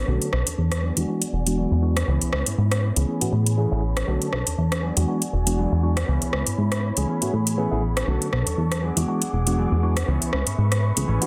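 A punchy, up-front analog bass with a fast-attack filter pluck drives this sensual, nostalgic filtered disco house excerpt alongside overdriven house drums with metallic hi-hats and rim clicks, a phased tine electric piano through a combo amp, a clean picked guitar riff in the background and a dark, woody violin section holding bowed sul tasto chords with vibrato, while a filter sweep runs the full 11.3 seconds over swung 16ths and a cycling Bm9, E9, C#m7, Amaj9 progression.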